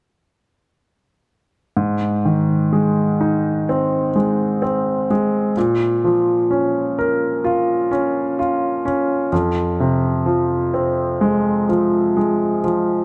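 A bright concert grand piano carries this short pop excerpt, playing an accompaniment part from 1.8 to 13.0 seconds in a range of F2 to Bb4. The mood is tender and emotional, moving at a slow 64 BPM in 4/4 with a straight feel, in Ab major. The piano sounds brilliant and polished, with deep bass, long sustain, audible action noise and an intimate, up-front presence. The harmony moves from Ab at 1.8 seconds to Bbm at 5.6 seconds and Fm at 9.3 seconds. A moderate, lush hall reverb with a 2.6-second decay surrounds the instrument, and the passage is cut from a longer piece.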